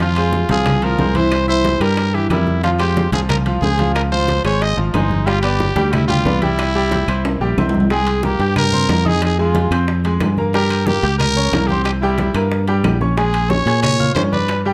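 A growling, raspy trumpet leads this fiery salsa cut at 182 BPM, singing up front with light vibrato over a brilliant grand piano with short sustain and a dark, round fingered electric bass that sits just as far forward. Ringing, low-tuned congas and metal-shelled timbales sit in the background alongside very quiet bongos and woody claves that enter at 0.2 seconds, all driving through a progression built on Fm, C7 and Dbmaj7. A drum fill at 7.2 seconds leads into a second section, and the whole excerpt carries a light reverb.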